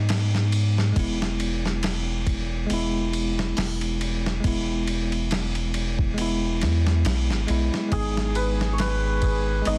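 Brooding and dark, this trip hop excerpt moves at 69 BPM with a lightly swung feel, built on a round, deep analog bass and a bell-like tine electric piano whose harmonic tremolo, 12-bit sampler grit, low-pass filter and tape echo colour its chords as they shift between G#m and E. A dusty, sampler-style soul drum kit sits up front with a thumpy kick, a softly clipped snare and studio reverb, while a shimmering hammered santur carries the melody with tape echo from 7.9 seconds. The dense, heavily limited master is laced with vinyl crackle.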